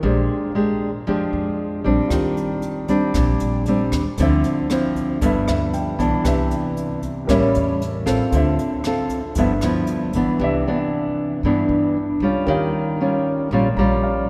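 Bathed in a wet cathedral reverb with a long 4.8-second tail, this short bossa nova excerpt sounds as if captured in a church or concert hall, giving its sunny, breezy mood an airy, spacious halo. Up front, a dark, full-bodied nylon-string guitar carries the accompaniment with thumb-plucked, classical character, moving through lush extended chords such as Ebmaj13, G13 and A7b9. A woody, thumpy upright bass plays pizzicato underneath, while a baby grand piano sits in the background with a natural tone and short sustain, stepping forward with brief fills at 5.2 seconds and again near the close. A jazz brush kit with a boomy kick, hi-hat and rim click joins at 2.1 seconds and drops out at 10.3 seconds, just as the opening section repeats. The straight feel and the rich harmony keep the passage sunny and breezy throughout.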